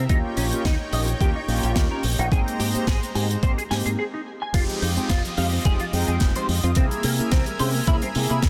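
A lush, thick pad with sidechain pumping, a clean semi-hollow electric guitar riff with tape echo, and a punchy, bright envelope-filtered fingered bass open this sensual, cosmic nu-disco excerpt, joined almost at once by mellow, brassy synth brass, an up-front knocking electronic kick, and a tight funk kit with a high-tuned snare, hi-hat and crash. After a brief break, the drop at 4.5 seconds brings in soft, round pluck arpeggios, very quiet, and a downlifter in the background. The chords move from Eb7 and Abmaj9 to Fm7 and C7b9b13 within a dense, heavily limited master and light small-room ambience.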